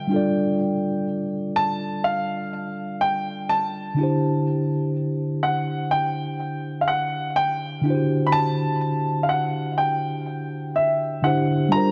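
A dark, short-sustained baby grand piano carries the melody up front, its natural tone sitting high in the register across this slow 62 BPM R&B fragment in 4/4. Beside it, a mellow, clean tine electric piano heard through built-in speakers supplies the accompaniment, moving from G9sus4 to D9sus4 at 4.0 seconds. Light reverb and a small room ambience wrap the two keyboards in a late-night, longing mood throughout the roughly 12-second cut.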